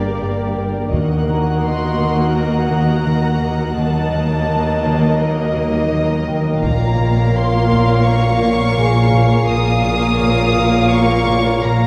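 A wet scoring-stage reverb with a 1.8-second tail wraps this ominous, eerie excerpt of suspense film score, moving at 84 BPM in a straight 4/4. Muted violin sections carry a veiled melody and a second line beneath it, while con sordino violas add a distant accompaniment and close, dark cellos and double basses hold down the bass. A thumb-plucked concert harp rings through a low riff, and a glass harmonica sustains pure, ethereal chords with a slow attack. A vibraphone played with soft mallets adds a mellow, metallic shimmer in the background, and from 0.9 s a faint, high muted violin texture hovers above the ensemble. Very quiet taiko hits with hard sticks surface twice, at 0.9 s and again at 6.6 s, as the harmony shifts from G minor to E-flat minor and then to B-flat minor.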